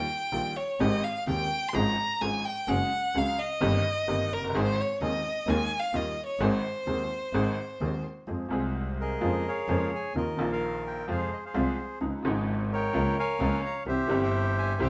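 A rich, smooth violin opens this sultry, dramatic tango excerpt, bowed with vibrato and standing up front in a solo passage over a bright, woody upright piano and a bowed double bass. The piece moves at 129 BPM in 4/4 with a rubato feel, starting in Ab major before darkening into F minor at 8.3 seconds. The slightly detuned piano gives brilliant, short-sustained accompaniment, while the close, earthy bass adds a biting, nasal tone with an airy bow and light vibrato. The violin steps back at 8.1 seconds, and at 9.0 seconds a reedy bandoneon takes the melody, airy and forward in the mix. A moderate large-studio reverb gives the ensemble a sense of space. The violin reappears only for a final instant before the cut.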